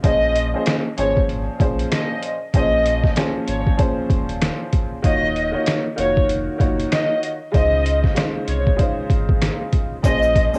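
A muffled, sampler-style drum kit anchors this reflective, dark boom-bap hip-hop excerpt, its thumpy kick, medium-tuned snare, rim click and hi-hat sounding pitched down, compressed and up front with a swung sixteenth-note feel. Alongside it, a woody, slightly detuned upright piano plays the accompaniment with long sustain, its worn tone filtered and softened by cassette tape. A distant, lush violin section carries the melody in a narrow upper register, bowed with vibrato, soft attacks and expressive portamento, also colored by tape and filtering. Beneath them, a deep sine sub bass with an added octave holds sustained notes over the chords Bbm9, Ebm9 and Dbmaj9 before returning to Bbm9 at 10.0 seconds. At that moment a grainy, bright tube shaker slips in quietly in the background, while the whole piece sits in the close ambience of a small room recorded at home on cassette.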